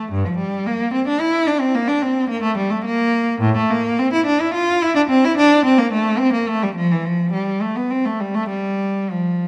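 A lone bowed cello opens this radiant, flowing classical excerpt, a baroque-style suite movement in triple time played with rubato, its rich, smooth vibrato tone sitting up front in a recital hall's moderate reverb as it ranges evenly between G2 and F4 across its 9.5 seconds.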